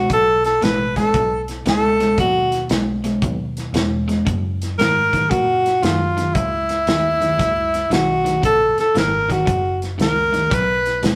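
A clear, close-miked tenor saxophone leads this laid-back, soulful electric blues shuffle, its soft-attack jazz lines carrying light vibrato and scooped notes up front over a swung 4/4 feel. Beneath it, a crunchy overdriven guitar picks a bright riff, and a dark, round, foam-muted fingered bass holds the low end. A warm soul drum kit, with a tight kick, medium-tuned snare, hi-hat and rolled-off top, comes in at 0.1 seconds, and the rough rehearsal-room recording sits in a wet stone room reverb as this fragment of a longer piece moves from B7 to F#7 before landing on B.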